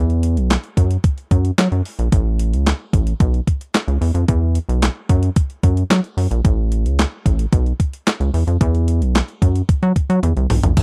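Early-eighties boogie funk at 111 BPM in a straight 4/4, this short cut from a longer piece has a feel-good, smooth mood. A rubbery square-wave bass opens at 0.0 seconds and sits up front, its hollow, bouncy tone shaped by a resonant filter pluck with a fast attack and mellow sustain, ranging from A1 to F#3. A clean 12-bit digital drum machine joins at 0.1 seconds, equally up front, with a thumpy kick, medium-tuned snare, hi-hat, handclaps, crash cymbal and toms in a sampler-style electronic sound that carries a tape-warm character from being re-recorded in a small room. The production is dry and close, in the manner of a 1970s studio, with little reverb around either part. A drum fill arrives at 10.2 seconds to close out the passage.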